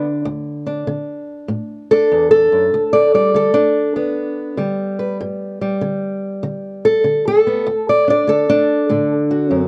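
Acoustic country blues carries a swaggering, soulful mood in this short cut from a longer piece, set in 4/4 with a swung eighth-note feel. A lone fingerpicked, ladder-braced acoustic guitar plays throughout, sitting up front and covering a range from low D2 up to D5. Its old strings give a dark, woody, boxy tone. The harmony moves from D to G at 2.7 seconds and back to D at 7.7 seconds. Light reverb surrounds the guitar, and the production is dark and warm overall.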